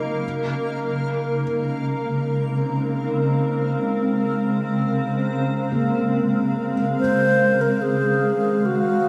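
A cloudy, blurred granular pad sits up front from the start, holding sustained chords with a slow attack and long release in its own reverb, while a soft, felt-muted upright piano plays arpeggios in the background, its thick felt and audible action noise giving it a dark, intimate tone through an analog delay. High above, a reversed, detuned texture adds a bright, dreamy shimmer in the background, and it fades out before both it and the piano stop at 7.0 seconds. This ambient piece moves in free time with a luminous mood, built on a Bbm9/Db chord that gives way to Dbmaj9 at 7.0 seconds. There an airy alto flute takes the melody up front, its crisp attack, lifted highs and expressive vibrato passing through an analog delay, as a filter sweep moves across the evolving pad. The whole mix is soaked in a huge, wet reverb, and the fragment is cut from a longer piece.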